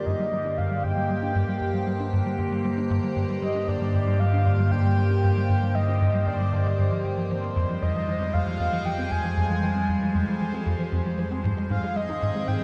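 A straight 4/4 pulse, driven by a tight, punchy sawtooth sequencer bass riff with tape echo, anchors this mysterious, expansive piece of ambient space music, where an evolving, morphing wavetable pad sits up front with phaser, a breathy flute-like lead with vibrato and chorus carries the melody, and a bubbling, resonant stepped-filter texture murmurs in the background, the dreamy cassette-toned mix soaked in cathedral reverb as the harmony moves from Gm to Fmadd9 at 7.3 seconds and Ab at 11.4 seconds.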